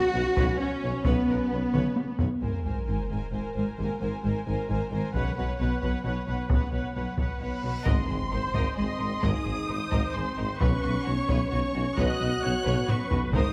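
A lush, majestic film-score passage in 3/4 opens with a softly attacked violin section carrying the melody over intense violas, mellow background French horns, a very quiet, distant trombone section that stops at 2.2 seconds, and smooth cellos and double basses holding the bass. A focused second violin line joins, a roomy tuba reinforces the bass, and a vintage, band-limited taiko ensemble struck with hard sticks drives the adventurous momentum, while huge, dark sub drops, impacts and a reverse cymbal arrive at 2.4 and 7.6 seconds. Faint, round timpani on calf heads sound briefly as the harmony moves between Bsus2 and Abadd9 in a moderate scoring-stage reverb.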